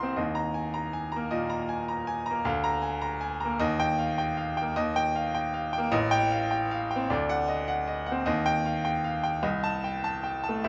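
A bright baby grand piano, up front with a brilliant, open tone and long sustain, carries this stormy, passionate virtuoso study alone, ranging from A1 to C6 with a supple rubato feel in four. The harmony moves restlessly through chords such as Bb/D, an A7 with a flattened fifth, D7 and Adim/C before settling briefly on Eb around 8.3 seconds. Close, detailed microphones capture the instrument inside a moderate recital hall reverb, in a short cut from a longer piece.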